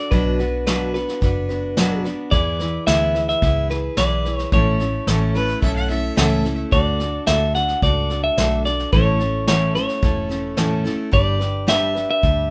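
Honky-tonk and classic country with a down-home, heartfelt mood, this excerpt sets a twangy, compressed clean electric guitar melody up front over a bright picked dreadnought acoustic guitar with audible finger squeak, a dark, round, foam-muted electric bass, and a vintage brush kit with a punchy kick and rolled-off top, while a clear, focused fiddle with light vibrato adds a brief second line from 5.4 to 6.6 seconds as the chords move through Bm, E, A, D, A and G in a moderate studio reverb.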